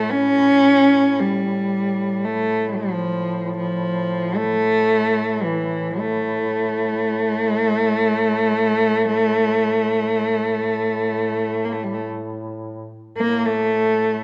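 A rich, bowed cello, played by a single player, carries the melody up front, singing with vibrato, soft attacks and expressive portamento across its mid register in this mournful, longing Caucasian folk lament. Beneath it, a mellow duduk holds a low drone from start to finish, sounding distant and roomy, with its own vibrato and scooped notes. The rubato, unevenly pulsed playing sits in a moderate scoring-stage reverb, and the fragment shifts into a new section at 13.2 seconds before it is cut off.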